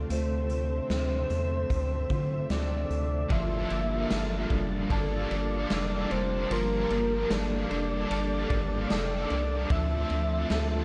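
A hazy, ethereal dream pop passage opens on vintage, warbling organ-string chords, clean fingered arpeggios from a mellow electric guitar, and a round, deep analog bass sitting up front, all sounding together from the start over a Dm7 chord. A moment later a soft octave-layered synth lead carries the melody with a full, detuned tone touched by vibrato, chorus and tape echo, while a raw garage drum kit brings a punchy kick, medium-tuned snare, hi-hat, ride cymbal and tambourine with a saturated, gritty edge and a rolled-off top. At 3.3 seconds the harmony moves to Gm9 and a bright, overdriven, double-tracked electric guitar enters with tremolo and ensemble chorus, thickening the accompaniment. The chords return to Dm7 at 9.7 seconds. Light reverb and small room ambience give the whole a dark, warm production, and the passage is cut from a longer piece.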